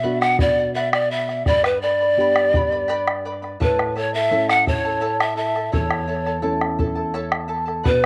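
A breathy, mellow bamboo pan flute carries the melody up front, with a gentle vibrato, a soft attack with a touch of chiff and a slightly unsteady tone that suits this melancholic, earthy Andean folk passage in 3/4, cut from a longer piece. Beneath it, a bright, shimmering charango with double strings and a full-bodied, thumb-plucked nylon-string guitar with audible finger squeak share the accompaniment, both touched by slapback echo, as the harmony moves from Bm to G to A. A round, vintage-sounding bombo joins at 0.2 seconds, and the whole ensemble sounds dry, recorded outdoors.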